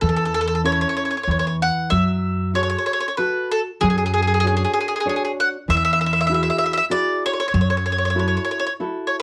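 A bright, double-strung mandolin sits up front with the picked melody in this lively, sunny Italian folk serenade, moving in a lilting 3/4 with a light swing and rubato phrasing. Beneath it, a full-bodied nylon-string guitar fingerpicks the accompaniment with audible finger squeak, both parts colored by cassette tape. A thumpy, woody pizzicato upright bass holds the low end until 8.4 seconds, all within a homey cassette recording touched by moderate studio reverb, cut from a longer piece.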